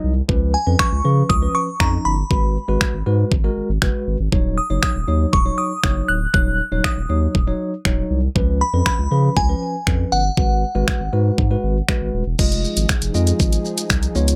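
A straight, driving pulse propels this energetic dance-pop excerpt, carried by an electronic, layered pop drum kit with a knocking, overdriven kick, hi-hat, finger snaps, shaker and crash cymbal, up front and re-recorded in a small room. Beneath it, a deep, thick, saturated sine sub bass holds sustained notes with a fast attack, pumping along with the sidechain. A bell-like, clean tine electric piano fills in the accompaniment, pumping with the same sidechain. Above them, a glassy, crystalline vintage FM synth bell carries the melody high in its register, with a decaying, warbling tone shaped by chorus and tremolo. The harmony moves through Db7, Abm7 and Ebm7, and at 12.4 s the music shifts to Fm7 as an airy, evolving sawtooth pad enters with detuned voices, a noise layer, a filter swell, chorus and sidechain pumping. The mix is dry and direct, with little reverb, and the piece is cut from a longer track.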